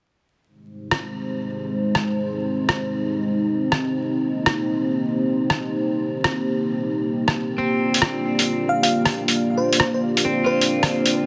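Ghostly and nocturnal, this future garage excerpt drifts in a swung 4/4 groove, cut from a longer piece. A deep, moody analog pad opens at 0.5 seconds, its detuned sawtooth and triangle tones with a sub octave swelling in on a slow attack and thickened by chorus as it holds sustained chords through Abmaj7, Cm7 and Gm7. Up front beside it, a lo-fi sampler-style kit sounds muffled, pitched down and tape-warm, with hi-hat and rim click, a softly clipped snare and a touch of studio reverb. At 7.6 seconds a clean electric guitar adds a bright, twangy, picked accompaniment trailed by delay, and at 8.7 seconds a bell-like FM electric piano carries the melody with a sparkling, decaying tone shaded by chorus, tremolo and delay. A huge ambient reverb and vinyl crackle surround the dense, heavily limited mix.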